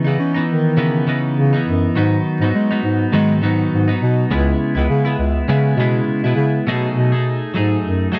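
Indie pop with a bedroom-pop haze, this wistful excerpt moves at 102 BPM in C# minor with a light sixteenth-note swing, drifting from C#m9 through G#m7 and C#m7 before settling on B6 as a new section arrives at 6.7 seconds. Up front, a breathy bass clarinet carries the bass line in a mellow jazz style, with light vibrato and a smooth top, while a bright, twangy twelve-string electric guitar plays clean, picked, compressed accompaniment coloured by subtle chorus and a warbly pitch drift. The dark production sits in a small room with light reverb.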